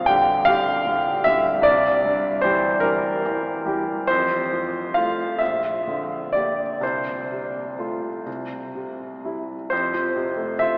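Dreamy and serene, this romantic classical nocturne for solo piano drifts in 6/8 at a slow 40-52 BPM counted in dotted quarters, with a flexible rubato feel in F major, tuned to A4 = 439 Hz. The grand piano sounds clear and intimate, its natural tone carrying audible action noise as it moves through a gentle progression, from Gm7/Bb and C7 to a settled F chord at 9.7 seconds, just before the cut ends at 10.8 seconds. The whole is bathed in a long, wet cathedral reverb and heard from further back in the room, with a thin, AM-radio quality.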